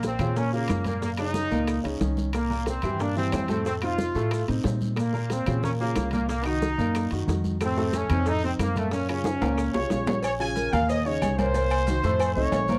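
A punchy, up-front trumpet section carries the melody over a driving, fiery salsa groove, with a worn concert grand piano comping and a growly, thumpy pizzicato upright bass underneath, while timbales and agogo bells ring out over background congas, tight high-tuned bongos and cowbell, raspy guiro, grainy maracas and very quiet woody claves; a drum fill at 9.3 seconds leads to an airy, hollow concert flute joining in the background at 10.2 seconds, all in a dry, close 1970s-style studio sound cut from a longer piece.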